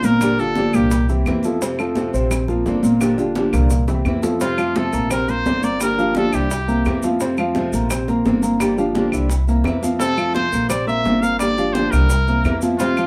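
A straight 4/4 Cuban son and guajira groove runs at 172 BPM in F major, with hard-handed, damped congas, round low-tuned bongos, saturated woody claves in the background and grainy maracas setting a sunny pulse, plus a drum fill from 3.0 to 4.4 seconds. A fingerpicked nylon-string guitar with audible finger squeak, a dark, vintage grand piano playing long-sustained arpeggios and a thumpy pizzicato upright bass with steel strings fill out the band, cycling through Gm7, C7, F and Bbadd9. Up front, a bright solo trumpet with vibrato and a smooth top carries the melody in phrases starting at 0.0, 4.4 and 10.0 seconds, the group playing live together in a small room in this short cut from a longer piece.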